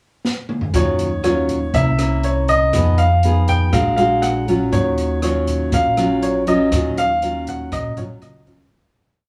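Smooth and melancholic, this short bossa nova piece in Eb minor moves at 120 BPM, opening with a drum fill on an open jazz kit before the band settles into a soft groove over chords such as Ebm9, C7b9 and Bb7b13. A fingerpicked nylon-string guitar sits up front with thumb bass, syncopated plucked chords and audible finger squeak, while a woody pizzicato upright bass plays a two-feel root-and-fifth line and the dark kit adds a high-tuned snare and boomy kick. A natural, deep-bodied concert grand carries a hook-driven melody in a small, lightly reverberant room where the band plays live together, and the music fades out from 6.7 seconds to its close at 8.7 seconds.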